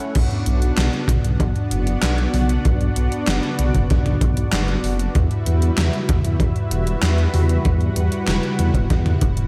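Light reverb and a digital ambience frame this cinematic, nocturnal synthwave excerpt in B minor at 96 BPM, moving from Bm to Emadd9 at 5.2 seconds. A smooth, detuned sawtooth pad with chorus and sidechain pumping holds soft-attack sustained chords from the start, while a deep, rumbling detuned saw bass with sidechain pumping sits up front and dark from 0.2 seconds. Alongside it, a gated 80s digital drum machine with overdrive and a gated-reverb snare adds crash, handclaps, hi-hat and toms, and an acoustic, punchy, gritty kick drum with a rolled-off top anchors the beat.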